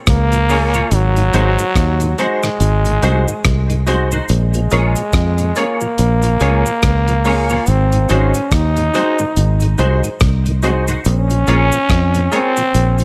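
A dry, close-sounding mix with little reverb frames this 13-second cut from a longer roots reggae piece, serious and hypnotic at 71 BPM in Bb minor with a swung sixteenth feel. Up front, a growling trombone carries the melody with a raspy, gritty edge and vibrato, its phrases trailed by tape echo. Beneath it, a round, dark fingered electric bass sits prominently, while a damped 70s drum kit keeps a tight kick, hi-hat and rim click in a mid-forward place, with a cabasa adding egg-shaker and handclap texture in the background. A lightly overdriven tonewheel organ with chorus vibrato and slow rotary speaker fills out the harmony from behind, joined by a clean, compressed semi-hollow electric guitar treated with ensemble chorus and tape echo. A concert grand piano with deep bass punctuates with stabs as the chords move between Bbm7 and Ab7 throughout.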